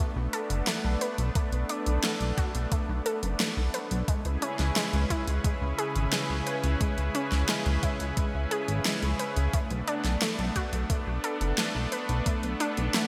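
A steady, straight 4/4 pulse at 88 BPM drives this cinematic, nocturnal synthwave fragment in B dorian, with a pop drum kit of fat snare and bright hats sitting up front under gated reverb, joined at 1.4 s by a thumpy, sampler-style electronic kick. A dark, glossy chorused synth bass pumps with sidechain compression beneath a thick, warbling, detuned pad holding sustained chords, while a punchy unison pluck spins delayed arpeggios over a Bm7 to C#m7 and back to Bm7 progression. The bright 1980s-style digital production wraps the whole in a lush hall reverb, giving the cut a glowing, retro sheen.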